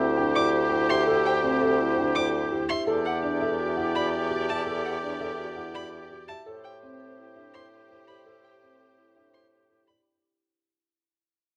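A woody marimba spins arpeggios through this hypnotic, meditative stretch of minimalist classical pattern music in 5/4, cut from a longer piece and fading out across its full 10.1 seconds. A soft-attacked bassoon holds the bass beneath lush, bowed symphonic strings, while a close-miked oboe carries a light-vibrato second line and a focused solo violin joins with its own arpeggios at 0.4 seconds. A dark, intimate grand piano, its action noise audible, traces the melody from the background, and a moderate scoring-stage reverb surrounds the chords as they move from D7sus4 through Em9 to Am7.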